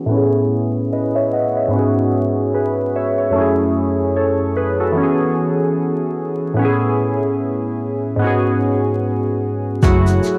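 A swung 16th-note groove at 74 BPM sets up this cosy, mellow lo-fi hip hop fragment, where round, chorused analog keys play alone through a filter sweep over Amaj7, F#m9 and E69 chords until the gritty, thumpy sampler-style drum kit, a woody pizzicato upright bass and a faint, grainy tube shaker join at 9.8 s, all wrapped in light reverb, cassette tape tone and vinyl crackle.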